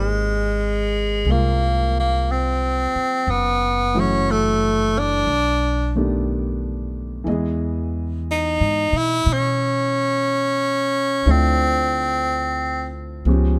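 An edgy, forceful tenor saxophone sings the melody up front with scooped notes in this romantic, intimate jazz ballad at 60 BPM with a gentle swing, backed by a smooth, vintage grand piano and a woody, thumpy pizzicato upright bass on gut strings, all in light reverb over lush chords from Abmaj9 to Dm9, with the saxophone dropping out at 13.0 seconds as this fragment of a longer piece draws to a close.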